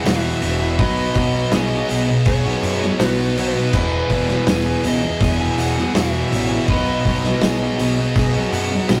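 Blissful and wistful, this short shoegaze and dream pop passage stacks a dark, compressed fuzz lead guitar melody over lo-fi, slightly broken-up arpeggios from an electric guitar through a small old amp, while a thick fuzz guitar and a biting overdriven guitar churn out riffs in the background beside a bright, double-tracked tight distorted guitar. A growling, round overdriven electric bass joins a loose indie drum kit that sits up front with a punchy kick, dark cymbals and a gritty, pumping room sound, along with a very quiet, jingly tambourine, all three entering at 0.1 seconds. The rough rehearsal-room recording carries tube saturation and a short, wet booth ambience as the chords move from E through Badd9 and back to E before settling on B.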